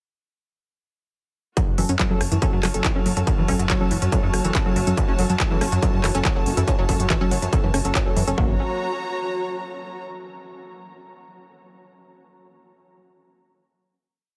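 Industrial and relentless, this short piece of driving peak-time techno drops in at 1.6 s with a distorted, up-front four-on-the-floor kick re-recorded in a large room, programmed claps, smooth hats and rim clicks, and a dark, detuned sawtooth bass galloping in sixteenths under sidechain pumping. A tight sequenced synth repeats a 5-step loop that drifts against the bar through chorus, phaser and delay, while crisp wavetable stabs move one chord shape in parallel in a dotted rhythm, a lush bowed string section slowly shifts chords, and a very quiet, eerie metallic drone warbles in from 2.3 s. At 8.4 s the groove gives way to a final chord held by the strings, and the whole mix carries a heavily compressed, radio-like digital sheen.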